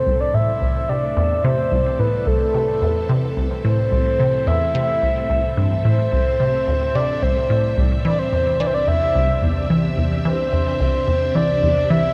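A straight 4/4 pulse at 109 BPM drives this expansive, hypnotic excerpt of sequencer-driven ambient space music, where a squelchy, resonant blip pluck riff with phaser and analog delay sits up front beneath a breathy, flute-like synth lead with vibrato, subtle chorus and delay, while a swirling, warbling string machine holding Cadd9 fades in over the full 12.1 seconds, all bathed in huge reverb and cassette tape character.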